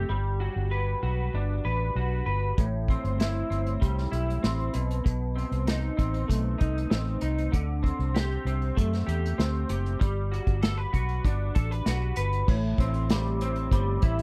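A twangy electric guitar played through a small old amp carries the accompaniment, its bright, slightly broken-up, lo-fi tone colored by analog chorus and a warbly pitch drift as it picks out the harmony from the first moment. This is dreamy, nostalgic indie and bedroom pop in G major at 97 BPM in a straight 4/4, moving through Gmaj7, Am7, B7b9 and D7sus4 before returning to Gmaj7 and turning to Am7 at 12.5 seconds, where a new section begins. A vintage foam-muted fingered electric bass sits up front with a dark, round, punchy sound from the start. An acoustic drum kit enters at 2.6 seconds, played with bundle sticks, bringing a punchy kick, a medium-tuned snare, hi-hat and crash cymbal. The recording has the dry, close feel of a 1970s-style studio with little reverb, and this short cut from a longer piece keeps every part close and intimate.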